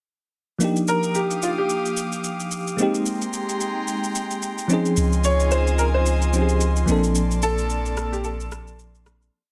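Set in a light reverb, this soulful amapiano piece is a whole breakdown, with a bell-like FM electric piano holding mellow, rootless chords with grace notes under the tremolo and chorus, while an airy, breathy pad sustains bright chords moving from Ebmaj9 through Abmaj9 and Dbmaj9 to Bbmaj9. A clear, worn baby grand piano carries a motif-based melody of call phrases through a tape echo, and a layered electronic shaker and rim click keep a swung groove with a steady shaker and syncopated rim. A deep, punchy sub bass with a pitch-drop attack enters at 5.0 s with sustained notes up front, just before the fade-out that begins at 7.2 s.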